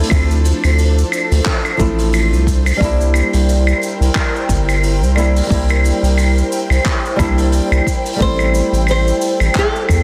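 A round, up-front analog bass anchors this relaxed, wistful sunset chillout excerpt at 89 BPM with a swung 16th feel over Dm7, C7 and Am7, joined by a deep, layered electronic kick, a brushed jazz kit with a rolled-off top playing cabasa, claves, handclaps and hi-hat, thumb-plucked flamenco guitar through tape echo, and an ethereal, mellow detuned pad with ensemble chorus, while a fingerpicked nylon-string guitar with delay enters at 8.2 s in a dense, heavily limited modern master.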